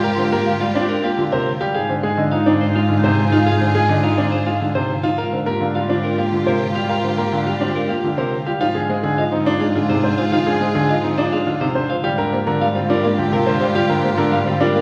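A clear, intimate baby grand piano sits up front with arpeggios, its action noise audible, in this propulsive, hypnotic minimalist classical passage at 105 BPM in 3/4, cut from a longer piece. A twangy, bright electric guitar carries the melody over a present grand piano accompaniment and a single bowed cello holding an Ab2 bass with vibrato and portamento, while a dark clarinet second line and a hollow wooden flute's arpeggios, entering at 0.2 s, sit in the background. Rich, bowed chamber strings sustain chords as the harmony alternates between Gm7/Ab and Fm7/Ab, and the recording places the listener further back in a reverberant recital hall.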